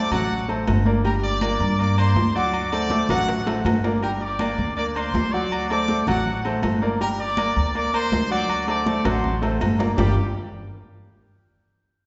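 A bright, tight trumpet section with light vibrato leads up front over clear, present grand piano and woody pizzicato upright bass in this fiery, danceable salsa excerpt in G minor at 161 BPM, while ringing metal-shell agogo bells and timbales sit close and dry, high-tuned congas played with soft hands stay in the background, drum fills land at 3.1 and 9.1 seconds, the harmony moves between D7 and Gm before reaching Gm7, and a wet scoring-stage reverb gives the mix a dusky, rolled-off top.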